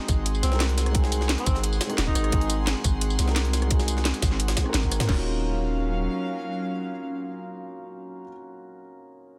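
Lush and dreamy, this short cut from a longer liquid drum and bass piece opens on a drop, with a dark, intimate grand piano carrying delay and an airy, detuned pad with chorus beneath a whispered alto saxophone melody that enters at 0.4 seconds and ends by 2.6. Up front, a deep sine 808-style bass with a fast attack and long decay sits under layered electronic kits with a tight kick, cracking snare and metallic hats, while a gritty, pitched-up jungle sampler kit with high-passed hats and snare hovers in the background. The drums drop out around 5.1 seconds as the harmony shifts from Ab7 to Ebm9, and the piano's vintage, smooth tone with audible action noise rings on alongside the pad and the fading bass in a light digital ambience within a dense, heavily limited master.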